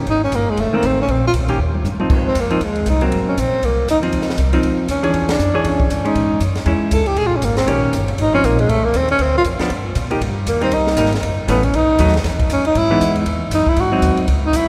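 Relaxed and swinging, this fast small-group jazz excerpt in swing and bop style moves at 237 BPM in 4/4 with a lilting swung feel, set in Ab major. A breathy tenor saxophone carries the melody up front, close-miked and intimate, its whispered tone, soft attack and gentle vibrato giving the solo line a hushed quality. Beneath it, a woody pizzicato upright bass with steel strings anchors the low end, while a clean, dark hollow-body electric guitar, played fingered, comps through colourful changes that include extended and rootless voicings. A compact cocktail drum kit, dry with dark cymbals, a high-tuned snare and a punchy kick, adds a fill from 1.6 to 2.1 seconds, and the band hits an accent at 5.3 seconds. The whole group sits in a cathedral-like reverb with a long, lush tail, and a new section arrives at 10.2 seconds as the harmony shifts toward a bridge.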